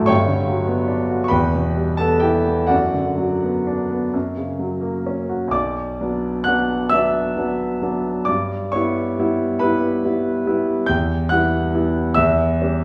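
A concert grand piano with a deep bass and a natural, up-front tone carries this melancholic, mournful romantic nocturne alone, spanning G1 to G6 in B minor with the tuning set at A4 = 437 Hz. The piece unfolds slowly in 12/8 at 41-52 BPM with a free rubato feel, moving from Gmaj7 through Em and Bm/F# to F# before a new section begins at 5.5 s on Bm and drifts through G6 and Em to close on C#dim/E. A wet, large studio reverb with a 1.3-second tail places the listener further back in the room, framing this short fragment cut from a longer piece.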